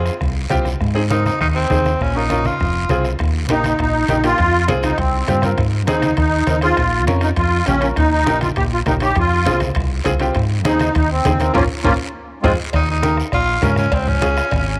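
A growling, gritty tenor saxophone with slapback echo opens this fiery, danceable cumbia at 201 BPM in F minor, over a brilliant, slightly detuned upright piano with audible action noise, a round, punchy fingered electric bass up front, and a soft-beater bombo in the background. Raspy guiro, low-tuned congas, and ringing timbales and cowbell fill out the percussion, while a reedy, shimmering musette accordion carries the melody from 3.5 to 12.5 seconds over chords such as Fm, Ab, Bbm and Eb. After a drum fill and a band accent, the saxophone returns at 12.8 seconds for a closing solo, all within a light reverb.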